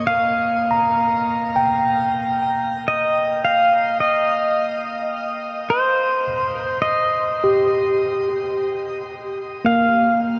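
A slow, straight pulse in three sets an unhurried sway for this short ambient fragment, cut from a longer piece. The mood is melancholic and serene, steeped in a dark, warm production and a long, wet shimmer reverb. A tine electric piano plays arpeggios from 0.0 to 10.4 seconds, its clean tone heard through built-in speakers and placed up front. Alongside it, an electric pedal steel guitar carries the melody in a narrow high register, and an F5 sounds at the very start. The pedal steel is twangy and compressed, played with fingerpicks and slide, with volume swells, until it stops at 10.2 seconds. Both instruments trail a diffuse ambient delay that blurs their edges into the surrounding haze.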